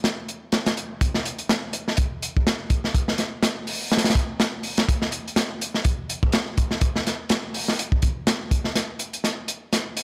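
A crunchy breakbeat drum kit carries this swaggering, energetic excerpt from a longer piece, playing throughout its 10 seconds with hi-hat, kick drum and snare drum. The groove sits at 124 BPM in 4/4 with a 56% swing on the sixteenths, giving the breakbeat a loose, strutting lilt. The kit sounds acoustic and saturated, with a gritty, mid-forward character, a medium-tuned snare, a tight kick and a rolled-off top end, placed up front in a dry studio room with little reverb. After a brief opening second, a build-up runs from 1.0 to 10.0 seconds, capped by a drum fill from 8.8 seconds to the close.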